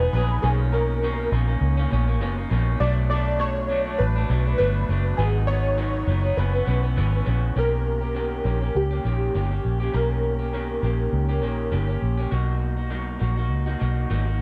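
A lightly swung sixteenth-note groove in 4/4 carries this hazy, sunny piece of indie bedroom pop, a fragment cut from a longer track and moving through lush major-ninth and seventh chords. A mellow, detuned sawtooth keyboard with a filter sweep sings the melody through ensemble chorus and tape echo until 12.0 seconds, over a slightly broken-up, compressed lo-fi electric guitar with subtle chorus and vibrato. Underneath, a round, foam-muted electric bass sits up front, all framed by light digital reverb in a dark, warm production.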